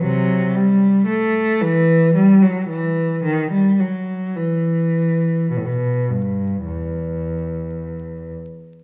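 A single bowed cello opens the recording at once, playing a serene, dance-like movement in the manner of a baroque suite. The line sits in the instrument's low register, from E2 up to A3, and moves in an unhurried four-beat metre with a flexible, rubato feel. The tone is clear, smooth and even, coloured by vibrato, and the cello sits up front while still carrying a distant quality. A reverberant recital hall gives each note a soft halo, and the overall production is dark, with vinyl crackle beneath. The cello stops at 8.3 seconds, as this short fragment is cut from a longer piece.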